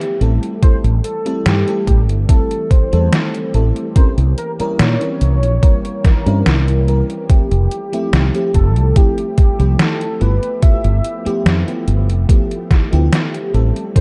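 A slow, straight 4/4 pulse at 72 BPM is set from the outset by a detuned 8-bit digital drum machine whose overdriven hi-hat and medium-tuned snare carry a gritty, small-room character, joined at 0.6 seconds by a thumpy, tape-warm electronic kick drum sitting up front. This hazy, woozy vaporwave excerpt, cut from a longer piece, moves through Am7, C7b9, Fmaj9 and G13, with a dark, round fretless electric bass entering up front at 0.2 seconds. An FM electric piano layered with a soft pad supplies dreamy, quickly decaying accompaniment treated with phaser, analog chorus and analog delay, while a silky vintage string machine holds slow-blooming chords in the background under ensemble chorus. From 0.6 seconds a velvety synth lead with a sub octave and vibrato sings the melody, smoothed by chorus and tape echo. Light reverb and digital ambience frame a dark, cassette-tinged production.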